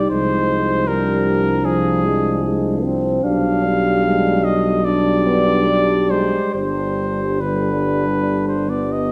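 Elegiac and yearning, this short excerpt from a longer classical piece unfolds like a hymn for brass band, moving at a rubato pace of roughly 69-78 BPM in 4/4. A clear cornet carries the melody up front, singing in its upper middle range from Ab4 to F5 across the full 9.1 seconds. Behind it, a dark French horn section holds a second line in a narrow span, while a mellow euphonium and a mellow trombone with vibrato fill in the accompaniment from the background. A tuba with light vibrato anchors the bass, sitting prominently in the mix yet sounding distant and roomy. The harmony shifts from Dm7b5/C to G7/B at 3.2 seconds before settling on G at 6.5 seconds, all bathed in a moderate scoring-stage reverb that lends the ensemble a spacious glow.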